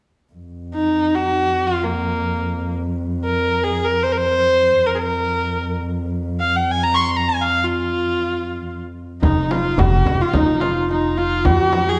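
Persian modal ensemble music in free time and F dastgah shur, melancholic and soulful, opens at 0.3 s with a dark, nasal bowed double bass drone, joined at 0.7 s by a rich, up-front kamancheh melody full of vibrato and portamento; at 9.2 s a shimmering hammered santur second line, a woody pizzicato upright bass on gut strings, a deep, close and dry tombak and a frame drum in the background join, heard within a reverberant recital hall until the excerpt breaks off at 12.0 s.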